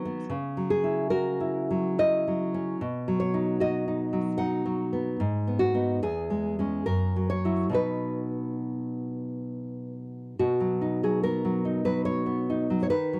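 The recording is dry and close, in the manner of a 1970s studio, with a light touch of reverb around the instrument. A single nylon-string guitar plays a tender romantic piece in three-four time, its pulse moving freely with rubato. The fingerpicked tone is warm, deep and classical, with the sound of fresh strings and an audible finger squeak, all sitting up front in the sound. The harmony travels from F#7/C# to B, then through G#m7, C#m/E and F#7 before settling back on B at 7.7 seconds. At 10.4 seconds a new section begins, and the passage breaks off at 13.2 seconds as a short cut from a longer piece, leaving a warm, intimate impression.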